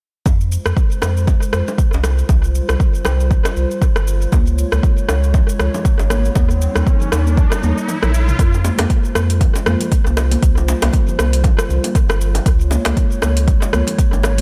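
An up-front, overdriven electronic kick and a round sine sub bass open this spiritual, earthy afro house excerpt with a swung feel, together with a deep house kit of metallic hi-hats, rim clicks, shaker and toms with tape echo, tight high-tuned bongos in the background, and a moody, detuned analog pad whose sustained chords carry ring modulation, chorus and sidechain pumping. Congas enter at 4.3 seconds and a riser sounds from 5.9 seconds, then a drum fill and a brief kick dropout lead into the second section at 8.4 seconds, all within an echo-heavy mix with light reverb.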